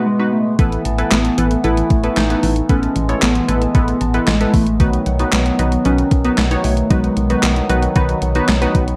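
Bright and nostalgic, this short synth-pop excerpt moves at 114 BPM in a straight 4/4, set in A lydian and cut from a longer piece. A soft struck synth lead carries the melody from the start, its gentle, keys-like FM tone warbling with a vintage character through chorus and tape echo, while a funky polysynth comp adds punchy, detuned sawtooth-and-square chords with a mellow chorus sheen. Underneath, a hand-pumped harmonium holds reedy, breathing chords throughout. At 0.6 seconds a solid FM bass, round and up front, arrives with a gated 80s digital drum machine whose thumpy kick, handclaps, hi-hat and overdriven gated-reverb snare drive the groove, along with a very quiet, soft round pluck tracing arpeggios. The harmony shifts from B to Asus2 and back to B at 4.8 seconds, all within a dark production and a moderate digital room reverb.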